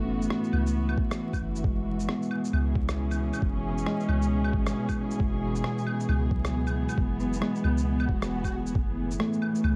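The rhythm moves at 135 BPM in 4/4 with a swung sixteenth-note feel, setting a melancholic, rainy future garage mood in this short cut from a longer piece. A deep, round 808-style bass with a soft sine tone and tube saturation anchors the low end, while a muffled, pitched-down electronic shaker, rim click and claves arrive at 0.2 seconds and a thumpy, overdriven kick enters at 1.0 seconds, both sampler-style and set in studio reverb. Above them, a worn, slightly out-of-tune tine electric piano plays accompaniment through tape echo and light overdrive, its sound coloured as if through built-in speakers. A chamber string section holds sustained, bowed chords up front, intimate and smooth-topped with vibrato, roughened by vintage 12-bit sampler grit. The bass, piano and strings pump against the sidechain as the harmony moves from F#m7 to C#m7/F#, and a background electronic swell enters at 8.0 seconds before F#m7 returns at 8.8. 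Vinyl crackle and dark digital ambience wrap the whole production.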